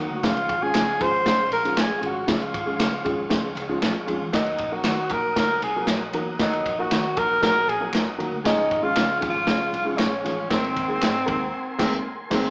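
A crunchy, saturated breakbeat drum kit with a tight kick and dark cymbals drives this danceable, uplifting 1960s-style soul cut at 117 BPM in Db major, with very quiet finger snaps, a woody, slightly detuned upright piano, a round, foam-muted electric bass in the background and a faint tonewheel organ with key click and rotary speaker beneath a mellow, roomy tenor saxophone melody up front, joined at 4.3 s by a clear, distant saxophone section on a second line before a band accent at 11.5 s, the group heard playing together in one room through a small speaker.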